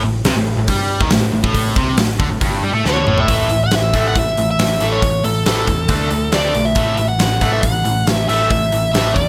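An up-front arena drum kit drives this anthemic, powerful hard rock passage at 138 BPM in a straight 4/4, its fat snare and punchy kick ringing in a big room alongside hi-hat and toms from 0.2 seconds. Two picked electric guitars sit in the background playing riffs throughout, one bright with overdrive and the other warm with a phaser, while a vintage muted electric bass adds a dark, round, foam-muted low end. A drum fill at 2.9 seconds brings in a bluesy lead guitar, dark and distorted with slapback echo, carrying the melody up front. The harmony opens on a Gsus24 chord before shifting at 3.3 seconds to a section built on A5 and D5 power chords. Moderate studio reverb gives the whole a sense of space in this short excerpt cut from a longer piece.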